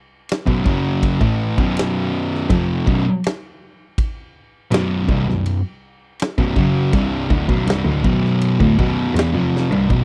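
A big acoustic rock drum kit with a punchy kick, medium-tuned snare, bright cymbals, ride and toms opens at 0.3 s. At 0.5 s a heavy, brooding stoner and doom metal riff on B minor lands at 81 BPM in 4/4, carried by an up-front fuzz guitar and a darker fuzz guitar behind it, a double-tracked crunchy overdriven guitar set further back, and a clear, focused bowed cello with vibrato and tube saturation holding the bass line, captured in a dry, close 1970s-style studio sound until a drum fill at 9.5 s closes this cut from a longer piece.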